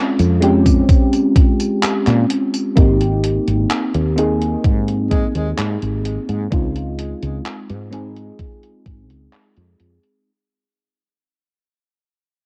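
A mellow FM electric piano opens this nostalgic, woozy vaporwave fragment, cut from a longer piece, its dark, warbling tone smeared by analog chorus and tape echo, soon joined by a woody fretless bass that sits up front, growly and round. A thumpy electronic kick and a muffled, detuned 8-bit drum machine of handclaps, hi-hat and tambourine pulse through a home cassette haze with light reverb, as the chords drift from a rootless Bbm9 to Abmaj9 and Dbmaj7. A clear tenor saxophone note with vibrato surfaces briefly at 5.1 seconds while the whole piece fades out from 2.8 seconds onward.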